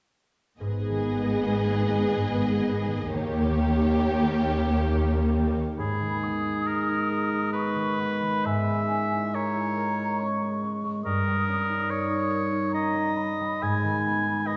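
Classical in style, this slow, romantic orchestral passage in three-beat metre moves with uneven, rubato pacing and a yearning, melancholic mood. It opens with bowed strings: a distant violin section carries the melody with expressive vibrato, while a darker, lush second violin section adds a gliding, portamento line beneath. Violas, cellos and double basses fill in the smooth, shadowy lower harmony, with cellos and basses sitting in the background. A ringing, fingerpicked concert harp plays arpeggios throughout, and at 5.8 seconds the strings give way to woodwinds. A clear, up-front oboe, an airy, hollow flute and a warm clarinet each take a second line over harmony that darkens before settling back on the home minor chord. The whole ensemble is heard from further back in a reverberant scoring stage, and the passage is cut from a longer piece.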